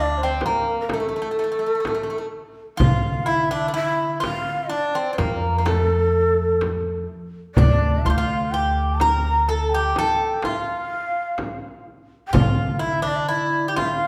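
A Turkish makam ensemble piece in D makam nihavent, this melancholic, hypnotic excerpt moves at 126 BPM counted in eighths, in a straight 10/8. A bright, metallic Greek bouzouki carries the melody up front, its picked double strings, some octave-doubled, ringing from A3 to Bb4. Above it, a breathy bamboo shakuhachi plays a second line with vibrato, tongued chiff and an unsteady, end-blown tone, while a woody pizzicato upright bass with steel strings anchors the low end from D2 to D3. The darbuka sits in the background with a crisp, compressed, saturated metal-shell sound struck with hard hands, joined by a deep, large frame drum in a live room, both entering at 0.4 seconds. The whole ensemble is bathed in the wet reverb of a recital hall, recorded in a church or concert hall, and the passage runs for 14.1 seconds as a single section cut from a longer piece.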